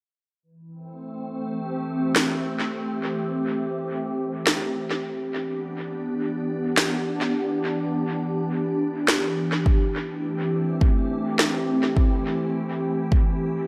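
A soft, detuned organ-like pad holds dark, evolving Am7 and Em7 chords through ensemble chorus and its own reverb in this hazy, deep ambient dub excerpt at 104 BPM in A minor, while an up-front, woody electronic snare with dub echo enters at 2.2 seconds and a deep, tape-warm electronic kick joins at 9.7 seconds, the parts sitting within a moderate echo-chamber ambience.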